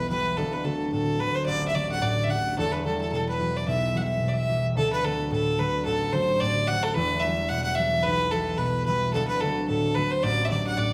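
A single bowed fiddle leads this Celtic reel excerpt, its earthy, bright tone carrying the melody up front with a slapback echo and a distant quality. Beneath it, a concert harp plays thumb-plucked accompaniment in its lower register, mellow and ringing, sitting nearly level with the fiddle. The tune drives along at 219 BPM in 4/4 with a light swing on the eighth notes, tuned to A4 = 442 Hz, and the mood is dark, lively and wild. The harmony moves between D and Em add9, and the same strain is played twice, the second pass beginning at 4.8 seconds. Close, detailed microphones capture both players inside a moderate recital hall reverb, and the clip ends at 10.9 seconds as a cut from a longer piece.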